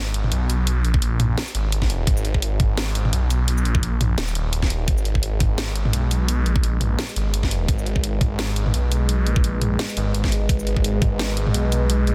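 Half-time drum and bass at 171 BPM in G# minor, tense and spacious, opens on a thick, swirling detuned saw bass with phaser and tube saturation sitting up front on a G# minor chord, joined by a layered drum kit with cracking snare, hi-hat, shaker and toms and a knocking electronic kick from 0.9 seconds, before a deep, moody analog pad with chorus and sidechain pumping slowly fades in at 5.4 seconds, all within a dense, heavily limited modern master and digital ambience.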